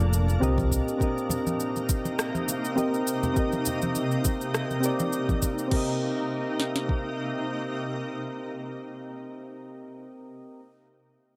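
Soft, warbling electric-piano-like synth keys with chorus and delay provide the accompaniment in this relaxed, wistful sunset chillout excerpt. A shimmering, ethereal pad holds sustained chords beneath them, and a round, punchy hollow-body electric bass sounds only for the first 0.8 seconds. Low-tuned congas played with soft hands sit close and dry alongside a tape-colored electronic R&B kit, whose cabasa, crash and rim click open the piece while its soft kick and sharp snare carry the swung groove until 7.0 seconds, all in a light digital ambience.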